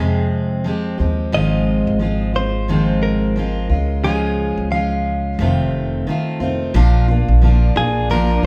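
A fingerpicked jumbo steel-string acoustic guitar sits up front with a full-bodied tone, fresh strings and audible finger squeak, carrying the accompaniment in this reflective, wistful acoustic pop excerpt in F minor at 89 BPM with a light sixteenth-note swing. A clean, compressed electric guitar recorded direct plays the melody over a woody, growly pizzicato upright bass. At 7.4 seconds a shimmering, ethereal pad with chorus and its own reverb enters in the background, as the band plays live in a large studio room with moderate reverb.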